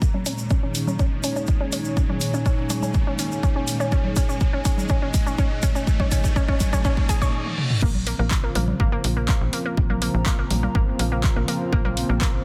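A straight 4/4 pulse at 123 BPM drives this melodic techno excerpt in Bb minor, driving and melancholic, where an up-front layered punchy kick and an overdriven analog drum machine of congas, handclaps, hi-hat, toms and crash sit under a chorused, sidechain-pumped detuned sawtooth pad, a round, wave-folded pluck arpeggio with dub echo, a grainy tube shaker, a dark warbling lo-fi background pad, and a riser with reverse cymbal through a build-up with filter sweeps and drum fills, until the drop at 7.8 seconds brings in a tight, nasal sequencer bass.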